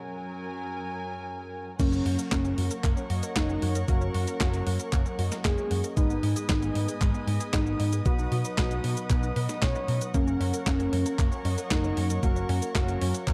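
Italo disco at 115 BPM in a straight 4/4, danceable and playful, this brief excerpt opens on a dark, reedy studio string section holding sustained chords and mellow synth brass stabs with chorus over an F#add9 chord. At 1.8 s the groove arrives: a thumpy, tape-warm electronic kick and a clean 12-bit drum machine with medium-tuned snare, handclaps, hi-hat, cabasa and crash cymbal, plus a round, hollow-body picked electric bass, while an analog pluck with chorus and delay ripples arpeggios in the background. A soft, full octave-layered synth lead with vibrato, chorus and delay carries the melody through F#, G#m and B, all set in light reverb and a dark digital ambience.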